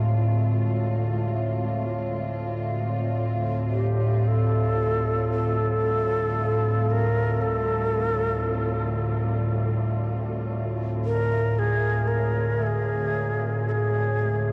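Dark ambient drone in D minor at a slow 57 BPM, cavernous and unsettling, cut from a longer piece and soaked in a huge, wet reverb and the warbling pitch drift of worn cassette tape. A nasal, organ-like drone with ensemble chorus sits up front in the low register, while a lush bowed cello section holds smooth, vibrato-laden chords above it and fades out across the whole passage as the harmony moves from F minor to D minor and back. At 3.7 seconds a breathy, close-miked shakuhachi enters with a soft-attacked bamboo melody, its tone trailed by tape echo.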